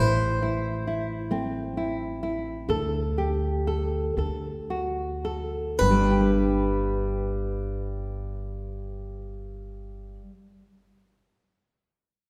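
Folk in a straight-feel 6/8, peaceful and warm, heard as a short fragment cut from a longer piece. A bright, boxy, picked swing-style acoustic guitar carries the melody over a full-bodied, fingerpicked nylon-string guitar with audible finger squeak, while a woody pizzicato upright bass with steel strings anchors the low end, all three up front. The music slows through its opening 5.8 seconds over Am, Dsus4 and D before settling on G, and a wet concert-hall reverb fills the church-like room around them.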